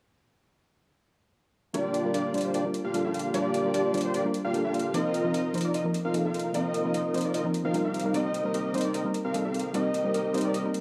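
A fat, detuned sawtooth polysynth carries the riff up front with lush chorus and tape echo in this dreamy, emotional half-time future bass fragment, entering at 1.7 s together with a soft, round pluck accompaniment that has its own chorus and tape echo and a metallic, overdriven electronic hi-hat, over a shift from Gm7 to F7sus4 inside a digital hall reverb.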